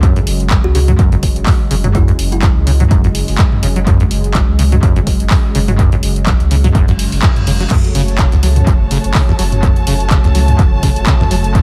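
This hypnotic, raw acid house excerpt opens on a full groove with a lightly swung feel: an overdriven, punchy analog kick, an overdriven drum machine playing crash, handclaps, hi-hat and toms through analog delay, and a deep, round sine sub bass. A squelchy, resonant sawtooth acid bass riff sits in the background under a filter sweep, colored by tube saturation, lush chorus and analog delay. Above it, a smooth, detuned sawtooth pad holds sustained chords with chorus and a gritty vintage 12-bit sampler edge, and the pad, acid bass and sub bass all pump against the sidechain. A woody, hollow kalimba briefly plucks a short background melody from 0.6 seconds, trailing dub echo. After a reverse cymbal at 6.9 seconds, the drop lands at 7.7 seconds on an F# minor chord, where a rich, bowed symphonic string section with vibrato joins and also pumps with the sidechain, all in a dry, echo-heavy mix.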